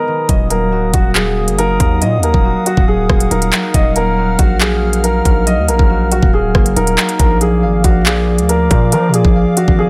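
A mellow, dark baby grand piano carries the melody through a digital delay over fingerpicked, ringing concert harp and a nasal, detuned analog pad with chorus, before a heavy, distorted 808-style bass and an up-front drill kit with a knocking kick, crisp hi-hats, handclaps and rim clicks enter at 0.3 seconds, driving this tense, ominous half-time drill hip hop cut at 139 BPM in Eb harmonic minor from Ebmadd9 to Bb at 7.2 seconds in a digital ambience.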